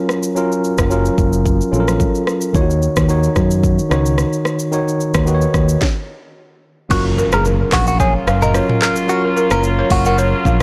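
A sunny, joyful afrobeats excerpt opens on a clean tine electric piano, sitting up front and playing F#maj7 and D#m7 chords. An electronic afro-pop drum kit arrives almost at once, with a deep kick, a sharp snare with soft clipping, metallic hi-hats, handclaps, shaker, rim clicks, toms and crash cymbal, all carrying a light sixteenth-note swing. A punchy fingered electric bass, direct and amped, joins within the first second. After a stop from 5.8 to 6.9 seconds, a bright, twangy clean electric guitar picks a short melody through phaser and digital delay, while a woody balafon played with soft rubber mallets buzzes through a riff and a muted French horn section holds nasal, stopped chords with a soft attack in the background. A very quiet electronic impact sounds beneath this entrance, and the whole recording is blown-out and overdriven, with light reverb.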